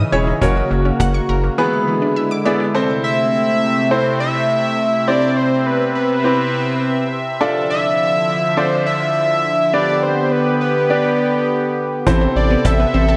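A fat, sawtooth-edged analog lead with vibrato carries the melody from 3.0 seconds, sitting up front in this nocturnal, driving synth-pop excerpt in A minor at 103 BPM. Beneath it, an evolving, resonant pad with chorus holds sustained chords across the whole passage, while a bright concert grand piano with brilliant tone and short sustain supplies accompaniment. In the opening seconds a detuned analog pluck spins arpeggios through chorus and delay in the background, joined by a deep, round analog bass and a snappy, close cajon played with soft hands. These three drop away early and return together at 12.1 seconds as the harmony lands on A minor add nine, after a progression moving through A minor, C major seven, D minor add nine and G. The mix is dreamy and soaked in a lush hall reverb.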